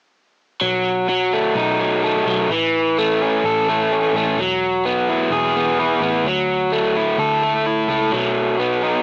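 This home recording has a small-speaker, cassette character and a touch of light reverb, and it's a short slice cut from a longer rock piece. At 128 BPM in a straight 4/4, with tuning set slightly under standard at A4 = 439 Hz, the mood is jangly and wistful. An overdriven electric guitar sits up front playing a picked, compressed riff with a warm tone, its sound carrying a cassette tape treatment. Beneath it, a vintage muted picked electric bass stays in the background, dark, round, amped and foam-muted. Both parts play together from 0.6 to 9.0 seconds through a progression of B7, A, Eadd9 and Dadd9 before returning to B7.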